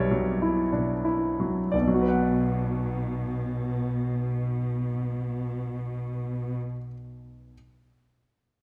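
Tragic and brooding, this fragment of a romantic movement for piano and orchestra unfolds in a rubato triple metre, easing to a slower pace over the opening 1.7 s before moving into a new section. A clear concert grand piano carries the melody up front, with deep bass, a smooth, vintage tone and short sustain. A dark, woody chamber cello section holds the bass with bowed vibrato until 6.6 s, leaving the piano alone to the close at 7.5 s, all set in the wet glow of a scoring-stage reverb.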